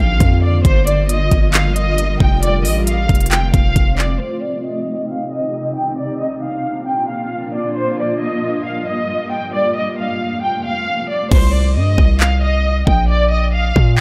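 Dry, echo-heavy and up front, this menacing, hard-hitting half-time trap excerpt opens with a lush, bowed violin section carrying the melody through tape echo, over a cloudy, blurred granular pad holding sustained chords. A punchy, heavy 808-style bass and an electronic trap kit of knocking kick, crisp hi-hats, handclaps and crash cymbal hit hard until 4.2 seconds, leaving the strings and evolving pad alone under a filter sweep. Bass and drums return at 11.3 seconds with the hi-hats muted, as the pad drops out and the violins carry on to the end.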